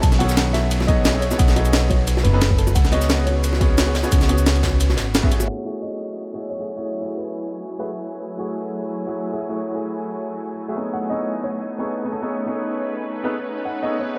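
A dreamy, lush haze of deep reverb hangs over this liquid drum and bass excerpt at 176 BPM in F# dorian, its rolled-off top end softening the whole picture. The opening drop stacks a punchy, layered electronic kick, a gritty, pitched-up jungle sampler-style kit with cabasa, hi-hat, ride and a medium-tuned snare, and a saturated, oversized low-tuned kit sitting in the background with dark cymbals and a fat snare in a bright stone room. A woody, up-front pizzicato upright bass plays beneath them from the start, very quiet, round bongos with soft hands slip in a moment later, and the whole rhythm section falls away by 5.5 seconds as the harmony moves from B13 and C#7sus4 to F#m9. An intimate grand piano with audible action noise carries the accompaniment throughout through a delay, while a mellow, worn second piano sings the melody through tape echo, pausing before returning at 10.9 seconds. 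From 6.6 seconds a shimmering, warbling, detuned pad with an octave-up sheen, chorus and sidechain pumping swells in under a filter sweep, drifting back to B13 at the close.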